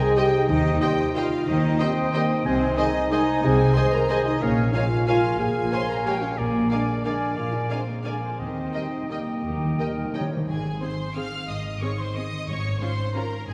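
Moving in a rubato 3/4 at roughly 164-197 BPM, this sweeping, elegant classical passage in Ab major is cut from a longer orchestral work. A violin section carries the lush, smooth melody with vibrato, while a second, more distant and intense violin section adds its own line alongside a bright solo oboe, a background clarinet and a pure, rolled-off concert flute. A mellow French horn section, prominent in the balance, holds sustained chords with a very quiet trombone section, and both fall away around 10.3 seconds as the woodwinds finish. Beneath them, a soft-attack viola section accompanies, a focused cello section and a woody double bass section anchor the bass, and a ringing, fingerpicked harp plays arpeggios in the background. Hard-mallet timpani strike briefly near the start, play a fill from 8.4 seconds as the harmony reaches Eb, and return at 12.5 seconds over the closing Db/Ab chord. 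The whole orchestra is heard from further back in a reverberant concert hall, giving the strings a spacious, enveloping glow.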